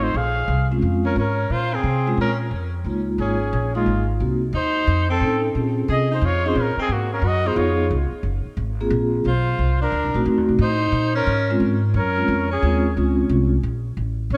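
Late-night and swinging, this short jazz excerpt from a longer small-group swing and bop piece moves at a brisk 178 BPM in 4/4 with a swing feel, set in B-flat minor. A mellow trumpet carries the melody with light vibrato, scooped notes and a smooth top, while a breathy alto saxophone plays a second line in a subtoned, clear voice touched with tape echo. Vibraphone played with soft mallets supplies the accompaniment, its metallic, ringing tone shimmering with fast motor vibrato. Underneath, a woody, thumpy upright bass with gut strings sits up front, plucked pizzicato and anchoring the harmony. The changes move from Bbm9 through Db69, a Cm7b5 to F7b13 turn, and a colorful Gbmaj9#11 before settling on Bbm7. The trumpet drops out at 12.9 seconds and the vibraphone at 13.5, leaving saxophone and bass to finish at 14.4 seconds, all bathed in a dreamy, lush hall reverb.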